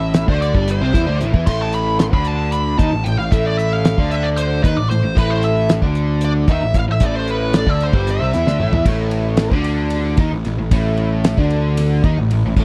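Hypnotic and dark, this excerpt of psychedelic rock in 7/8 at 227 BPM (eighths) sits on A minor, where a smooth overdriven lead guitar with wah and slapback echo solos until 8.8 seconds over a bright, double-tracked, flanged rhythm guitar riff, a fuzzy picked bass and a thuddy cloth-damped drum kit with fat snare and tight kick, and after a drum fill the band drops the chord at 8.9 seconds, all captured in a dry, close 1970s-style studio sound.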